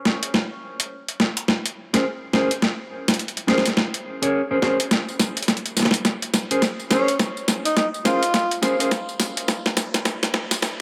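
A gritty, overdriven sampler-style drum kit opens this playful, funky glitch hop fragment at 0.1 s. Its hi-hat, medium-tuned snare and tambourine sit up front with a compressed, small-room crunch. The tempo is 105 BPM in 4/4 with a swung sixteenth-note feel, set in Bb minor over a Bbm9 chord, and the passage works as a build-up carried by a drum fill throughout. At 1.9 s a mellow, dark electric guitar joins with clean, fingered stabs treated with tape echo. A tenor saxophone in classical style takes a brief solo melody from 6.9 s, shaped by a low-pass filter with a filter sweep on it, plus tape echo. A moderate plate reverb and a high-pass filter shape the mix, and the clip is cut from a longer piece.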